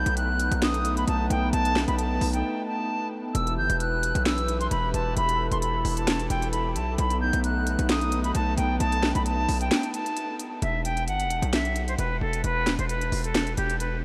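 Dark, menacing trap-style hip hop at 132 BPM in a half-time 4/4 feel, set in E harmonic minor and cut from a longer piece. An airy, reedy silver concert flute carries the melody up front from G4 to G6, its vibrato and tongued notes softened by a low-pass filter and trailed by analog delay. Beneath it, a distorted 808-style bass sits heavy and saturated in the low end, its fast attack and decaying sine tone roughened by a noise layer, while a smooth, detuned analog pad holds warbling chorused chords until 10.6 s. Crisp hi-hats, a sharp snare and handclaps from an electronic trap kit drive the groove, with breaks at 2.4 and 9.7 seconds. The harmony moves from B7 to Em and back before settling on a bare E5, and the whole mix is soaked in a huge ambient reverb that gives it a dreamy, shadowy haze.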